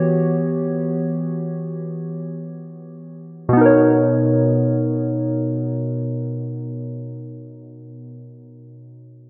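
This R&B fragment, cut from a longer piece, drifts in free time in B major with a tender, romantic mood. A single part of analog keys carries the accompaniment from 0.0 to 9.3 seconds, spanning B2 to C#5 and sitting up front in the mix. Its round, detuned tone blends square, sawtooth and triangle waves with a wave-folded edge, each note striking quickly and then decaying under a chorus. A filter sweep shapes the opening passage over an Em6 chord, and at 3.6 seconds the harmony settles onto a Bmaj9. A wet, lush hall reverb with a 2.1-second tail and a low-pass filter give the recording a hazy, enveloping glow.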